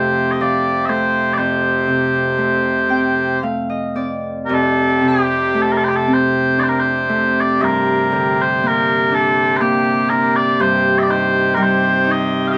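Haunting and mournful, this short fragment of a Celtic slow air moves in a flowing triple metre with uneven, rubato beats that give it a free, breathing feel. Mellow small bagpipes carry the melody from start to finish, their sweet, continuous tone sitting up front as a solo voice. Beneath them, a Celtic harp accompanies with bright, fingerpicked notes that ring out, adding a fill from 2.4 to 4.5 seconds. At 4.5 seconds the tune moves into a new section, and the harmony drifts from F toward G minor and a closing C minor ninth over G. The two players sound as if they are performing live together in one room, softened by a light touch of reverb.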